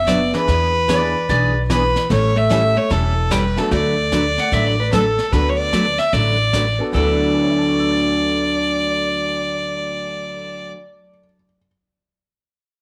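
A bowed fiddle with light vibrato leads this cheerful, down-home western swing passage at 149 BPM in D major, sitting up front with a clear, earthy tone while a dark, compressed hollow-body jazz guitar plays a second line until 4.9 s. A slide lap steel, played with fingerpicks, briefly appears early and then takes over the second line from 4.4 s. Underneath, a thumpy pizzicato upright bass, a full-bodied dreadnought acoustic guitar and a boxy upright piano move through E7, A7 and D6, with a background brush kit of high-tuned snare and boomy kick swinging until 7.3 s, all in light studio reverb.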